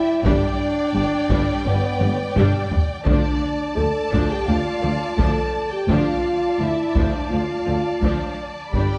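A dramatic, dark orchestral film cue at 85 BPM in D dorian opens with two violin sections, one carrying a soft-edged, vibrato-rich melody in the background while a darker section sings a second line above it, as a mellow, distant French horn section holds sustained chords. Almost immediately the viola section fills in close, lush accompaniment with expressive portamento. The low end rests on a very quiet, woody cello section, a smooth-topped tuba with light vibrato, and a distant double bass section sliding gently between notes. A taiko ensemble struck with hard sticks drives the piece from 0.3 seconds, with a drum fill from 2.0 to 3.1 seconds leading the harmony from G to Dm. Very quiet, articulate timpani on calf heads sound briefly on D3 as that chord arrives, and a moderate scoring stage reverb gives the orchestra a spacious, epic cinematic glow in this excerpt from a longer piece.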